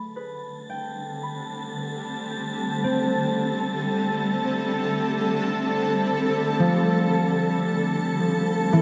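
In a slow, straight 4/4 at 56 BPM, this luminous, peaceful ambient excerpt opens on an F chord with thumb-plucked concert harp arpeggios, ringing through an analog delay, over a mellow sawtooth and pulse-wave analog drone on A3 that sits in the background with chorus and pulse-width modulation. At 0.7 s a bright, detuned granular pad enters up front with an octave-up shimmer, chorus and its own reverb, joined by an airy, wind-like tuned noise layer high above. The mix is echo-heavy under a long plate reverb, and the harmony moves to D5 at 8.2 s before this section of a longer piece is cut off.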